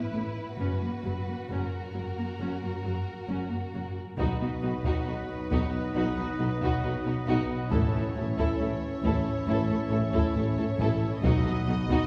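A cinematic, epic orchestral film-score passage at 68 BPM in B mixolydian, adventurous and majestic, cut from a longer piece. It opens on strings alone: one violin section carries a smooth melody with light vibrato while another plays a lush second line, over expressive violas, rich cellos and a close double bass section. At 4.2 seconds clear woodwinds and a mellow, loosely played French horn section add sustained chords, a very quiet tuba joins the bass, and a taiko ensemble struck with hard sticks enters, with close, dry timpani arriving at 11.2 seconds, all bathed in the long reverb of a church.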